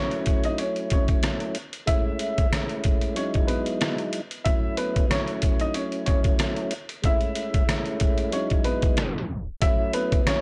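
Moody and gritty, this boom-bap hip-hop excerpt from a longer piece moves with a loose, swung 4/4 feel over a cycle of F#m7, Amaj7 and Emaj9 chords. A dark upright piano carries the melody from the start, its woody, mellow tone filtered at both ends and trailed by a digital delay. Beneath it, a tonewheel organ holds the accompaniment in a clean, clear voice with key click and vibrato, turning through a slow rotary speaker and given a cassette-tape coloring. A trip hop sampler-style drum kit enters at 0.1 seconds and sits up front, compressed and pitched down, with a thumpy kick, a medium-tuned snare, rim clicks and hi-hat re-recorded in a large room. At 9.0 seconds a tape stop drags the music down until 9.6 seconds, when the harmony lands back on F#m7.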